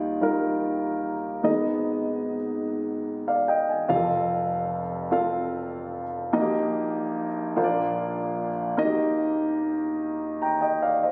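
A solo grand piano opens on a lush Ebmaj9 chord, its tone warm and up front, setting a reverent gospel mood. The music sways in a slow 6/8 with a straight feel, and the piano spans from deep bass notes up into its upper register. At 1.4 seconds the harmony turns to a darker Abm, then brightens through F, Eb/Bb and Bb before settling on Eb at 8.8 seconds, leaving a hopeful glow. Captured on a phone in the room, the sound carries a light club reverb and some compression, which gives it an intimate, unpolished closeness. This short excerpt from a longer piece ends at 11.1 seconds.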